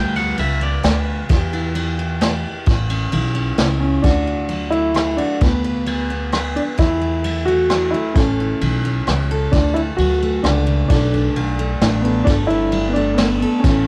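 Honky-tonk and classic country in a straight 3/4 at 131 BPM in D major, heartfelt and sunny, cut from a longer piece and captured as a home cassette recording with light reverb. A clean, twangy electric guitar with tape echo rings out for the opening second over a full-bodied jumbo steel-string acoustic guitar, a growly pizzicato upright bass with tube saturation, and a brushed drum kit with dark cymbals, a punchy kick and rim clicks. At 3.8 seconds a woody upright piano takes the melody up front, carrying it through chords such as Dadd9, Bm7 and Gsus2.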